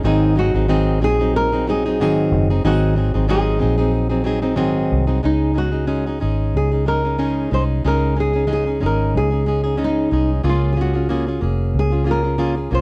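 Acoustic pop with a reflective, wistful mood, moving at 92 BPM in 4/4 with a light sixteenth-note swing, cut from a longer piece. A fingerpicked, plugged-in steel-string acoustic guitar carries the accompaniment up front, its jumbo body giving a full, warm tone. Beneath it, a vintage electric bass played with the fingers and muted with foam sits low and punchy, round and dark, and also placed up front in the mix. From 0.1 seconds a fingerpicked nylon-string guitar takes the melody with a shadowy classical character, staying in a modest range between Eb4 and C5. The harmony moves from Ab7 to Dbsus2 at 5.2 seconds, where a new section begins, then settles on Bbm7 at 10.4 seconds. The sound is dry and close, with little reverb, recalling a 1970s studio recording.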